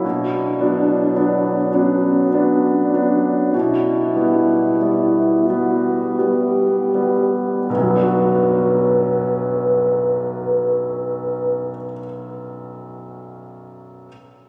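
A mellow French horn and a bright grand piano begin together in this solemn, melancholic romantic classical duo in B minor, moving in a slow, rubato 3/4 at 38-55 BPM that keeps slowing through the first 7.7 seconds. The horn carries the melody with a light vibrato over the piano's polished, up-front accompaniment, where the long sustain and audible action noise lend an intimate presence as the harmony shifts from Bm to Em/B and back. Captured on a phone and bathed in a long, wet cathedral reverb, this fragment of a longer piece lets the horn fall silent at 11.7 seconds while the piano rings on until 14.1 seconds.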